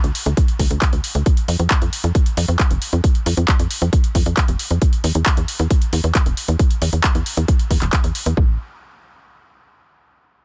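The sound is dry, with little reverb, in this short cut from a longer uplifting trance piece at 135 BPM in a straight 4/4. The mood is bittersweet yet euphoric. A tight sequencer bass drives things from the first moment, its sawtooth and square-wave tone shaped by ring modulation, a plucky filter, a fast attack and a quick decay, while sidechain pumping makes it breathe. Alongside it, a tape-warm analog drum machine supplies handclaps and hi-hat, and from 0.4 seconds a layered, punchy electronic kick sits up front in the mix. The bass continues until 8.6 seconds, and a new section begins at 8.4 seconds, carrying the piece through to the end of the cut.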